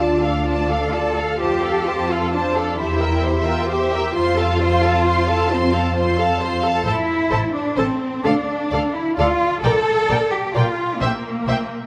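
Up front, a lush, expressive cello section carries the bass with vibrato and a soft attack, joined by a close double bass section in this tender, warm slow romantic movement for string orchestra in a rubato 6/8 at 44 BPM (dotted quarters). A violin section sings the melody with vibrato and a smooth top, while a second violin line with light vibrato and an even viola accompaniment fill the middle as the harmony moves through Dm, F, C7/E, Am and Gm. Cut from a longer piece, the upper strings stop at 11.6 seconds and the cellos ring on to 11.9 seconds in a moderate concert hall reverb.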